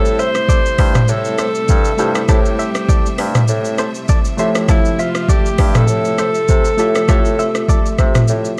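A breathy alto saxophone opens this smooth, sultry afrobeats fragment in A minor, singing the melody with scooped notes and light vibrato through a digital delay. Beneath it, round, detuned analog keys built from square and sawtooth tones shimmer with chorus and a filter sweep, while a lush, bowed string section holds a bright Am7 in the background and a mellow bassoon plays the bass line with a vintage, classical touch. At 0.1 seconds an overdriven electronic drum kit sits up front at 100 BPM in 4/4 with a swung sixteenth feel, its deep kick and metallic hats joined by rim clicks, shaker and toms. A clean, twangy electric guitar, recorded direct and compressed, enters at 0.2 seconds with a picked riff, bathed in spring reverb and delay. Light reverb gives the whole a dark, warm production.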